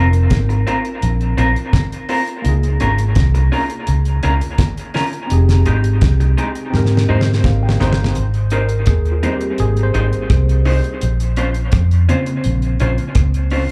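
Romantic and sweet, this cut from a longer lovers rock reggae piece moves at an easy 84 BPM in straight 4/4, set in Ab major and drifting through chords like Ab69, Db6, Fm9 and Abmaj7 before a closing Bbmadd9. A dark, round, foam-muted vintage fingered electric bass sits up front with a punchy, amped tone, joined by a dry, damped 70s drum kit with a fat snare, tight kick, hi-hat and rim click. A worn, slightly out-of-tune tine electric piano carries the accompaniment, its clean sound coming through built-in speakers and touched by slapback echo. An electric guitar through a small old amp adds picked stabs, slightly broken-up, lo-fi and compressed, treated with dub echo, plate reverb and slapback. The drums and electric piano share a fill at 6.7 seconds, and from 8.2 seconds the electric piano takes a solo over the second section. The whole performance has the feel of a live gig heard through the venue's PA, with a touch of club reverb.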